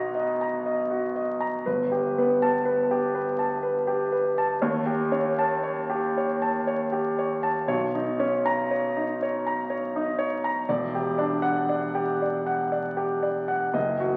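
Dreamy and serene, this impressionist classical solo piano piece drifts at 60 BPM in 3/4 with a loose, rubato feel, cut from a longer work. A clear, polished grand piano sits up front and spans from E1 to A#5, moving through lush chords such as Bmaj7, Gadd9, D#7#11, Bmaj9 and Em9 across its 14.2 seconds. The piano is bathed in a wet scoring-stage reverb and heard through the crackle of a very old 78 rpm record, giving the recording an aged, hazy sheen.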